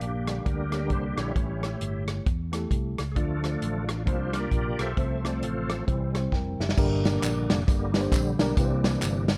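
A dark, warm studio sound frames this short, jubilant uptempo gospel cut at 133 BPM with a swung feel, where a reedy, key-clicking tonewheel organ on slow rotary solos over sustained chords throughout, a worn, slightly out-of-tune tine electric piano adds lightly overdriven accompaniment, a punchy fingered electric bass holds the low end, an up-front soul drum kit with dark cymbals and a tight kick plays a fill from 6.3 to 6.8 seconds, and tambourine, egg shaker and group handclaps join at 6.8 seconds over chords moving from Gm through A7, Dm and C9sus4 to a closing C7.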